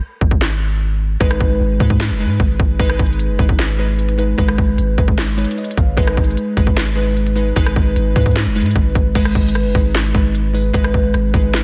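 Menacing and melancholic, this half-time trap cut at 151 BPM in G# minor opens with a break in its first 2.8 seconds, as a hard-clipped kick, sharp snare, crisp hats, handclaps, rim clicks and crash cymbal sit up front over a deep, long-sustained 808-style bass with a sine-like, mellow tone. From 1.2 seconds, glassy digital keys with chorus and an evolving filter sweep join up front, full-bodied yet decaying, before a new section arrives at 9.2 seconds. The dry, dense and heavily limited master keeps this fragment of a longer piece tight and close.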